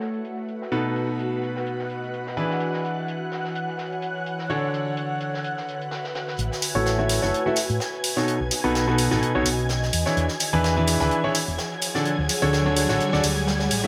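A bright, brilliant grand piano riff opens this feel-good, euphoric piano house excerpt, sitting up front with tape echo and a low-pass filter, over a silky, sawtooth analog string pad whose slow-attack chords carry ensemble chorus, vibrato and a filter sweep through the opening bars. Beneath them, a compact cocktail drum kit plays hi-hat and a high-tuned snare with a dry, natural acoustic character. An ethereal, airy pad of detuned unison tones adds a mellow, long-release haze with its own built-in reverb. At 6.4 s a build-up begins, as a dark, round, punchy fingered electric bass enters and a filter sweep moves onto the piano, joined at 6.6 s by a tape-warm electronic hi-hat placed up front, while a riser creeps in from the background at 9.7 s. The chords cycle through A6, B7, E7 and Dmaj7 with a light sixteenth-note swing, and the echo-heavy mix sits in a small room ambience with moderate echo chamber reverb.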